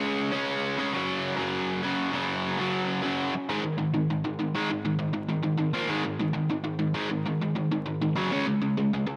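Punk at 199 BPM in a straight 4/4, this short, aggressive excerpt, cut from a longer piece, features a lone biting overdriven electric guitar playing solo from 0.0 to 9.2 seconds, picked and double-tracked, sitting up front with an analog delay. It moves through power-chord shapes on C#5 and F#5, then shifts at 3.5 seconds to G#5 and A#5 before returning to F#5 and C#5, its angry edge set in light reverb and a digital ambience alongside a layer of vinyl crackle.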